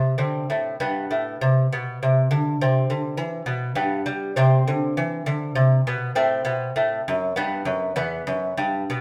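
A fingerpicked solo lute with delicate gut strings, some of them octave-doubled, sits up front in this solemn, introspective classical piece, a baroque-style dance in triple time played with a flexible rubato feel. The chords move from D5 through G, C, Am and Gmaj7 before settling on Em at 8.0 seconds, in a short passage cut from a longer piece. A moderate studio reverb gives the live room performance a gentle sense of space.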